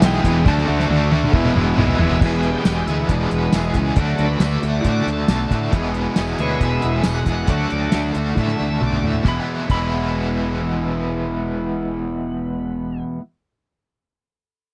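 A shouting tonewheel organ through a slow rotary speaker takes a solo from 2.2 to 9.3 seconds in this swaggering, sunny classic rock piece, riding over a damped, tight 70s drum kit, a round fuzz bass, a crunchy guitar and two overdriven semi-hollow guitars, one with tremolo and the other bright and dropping out at 2.2 seconds, while a clean lap steel slide line surfaces at the very start and returns at 9.3 seconds, captured in a dry, close 1970s-style studio sound.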